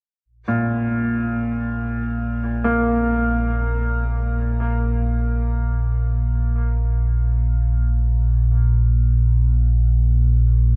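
Dark ambient drone in free time, this excerpt from a longer piece feels dark and unsettling from the first moments. A bright baby grand piano enters at 0.5 seconds playing arpeggios between Bb2 and Bb3, its brilliant, open tone treated with tape echo and shimmer reverb. At 0.8 seconds a deep rumbling synth drone enters beneath it, ominous and nasal, built from detuned triangle and sawtooth tones with ring modulation, a slow attack, long release and its own reverb. A filter sweep runs across the drone through the whole passage, keeping its sustained low tones shifting in color. Both parts sit up front within a huge, wet ambient reverb with a long decay, lending the passage a vast, haunted atmosphere.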